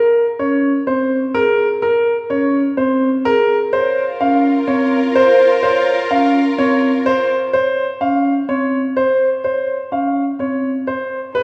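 Bright and hypnotic, this minimalist classical pattern piece, cut from a longer work, moves at 126 BPM in a straight 4/4. Up front, a warm baby grand piano carries the melody with long sustain, while a metallic, ringing vibraphone played with medium mallets and the motor off spins arpeggios over a Bbm9/C chord that settles to Bbm at 3.7 seconds. From there until 7.3 seconds, a mellow clarinet adds a second line in the background and a lush, bowed string section holds distant sustained chords with vibrato, the recording sitting in a wet scoring-stage reverb heard from further back in the room.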